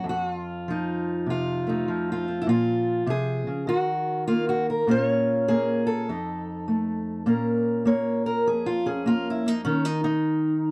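A fingerpicked steel-string parlour guitar, boxy and up front, carries this brooding, mournful piece of acoustic country blues alone, swinging at 100 BPM in Bb minor. Its chords move from F7 through Bbm9, Ebm and Bbm7 before the guitar takes a solo at 7.3 seconds over Bbm and Eb5. The short passage, cut from a longer piece, has the dry, close sound of a 1970s studio with a touch of light reverb.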